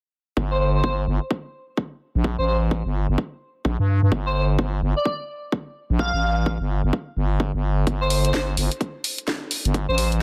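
Gritty and bouncy, this short bass house excerpt at 128 BPM in 4/4 with a 61% sixteenth-note swing rides a growling, thick FM bass with overdrive and sidechain pumping under a punchy electronic kick and an airy, dreamy chorused lead with vibrato between C5 and F5, while a house drum kit with a cracking snare and hi-hat joins at 7.9 s as the harmony lands on a rootless F/G, all in a dry, close sound.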